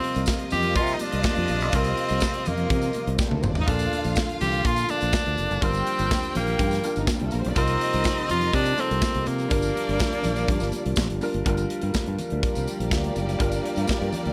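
A straight disco groove in 4/4 drives this glamorous, danceable cut from a longer piece, anchored by a tight-kicked studio drum kit up front with a drum fill from 3.2 to 3.7 seconds, while a growly, punchy fingered electric bass joins at 0.2 seconds. An edgy, forceful tenor saxophone carries the melody in a jazz-style solo, with scooped notes and vibrato, and bows out at 11.2 seconds as the music moves into a new section at 11.5 seconds. Beneath it, a lush symphonic violin section plays a smooth, bowed second line, and a clear, vintage grand piano with long sustain adds accompaniment in the background. A mellow, dark tonewheel organ holds sustained chords through a slow rotary speaker, its key click audible. Bright, high-tuned congas played with soft hands sit very quiet in the mix, and a jingly, band-limited tambourine adds shimmer, all set in studio reverb over a progression that moves from C7sus4 through Bbmaj7 and Gm7.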